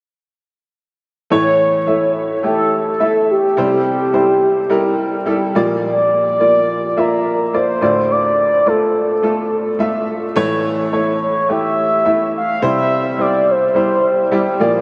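Pop in a driving, dramatic mood, where a round, horn-like sawtooth synth lead with soft attack, vibrato, chorus and phaser carries the melody up front from 1.3 s over a woody, boxy upright piano treated with lush chorus, both bathed in a huge ambient reverb that gives the excerpt a dreamy, soaked sound.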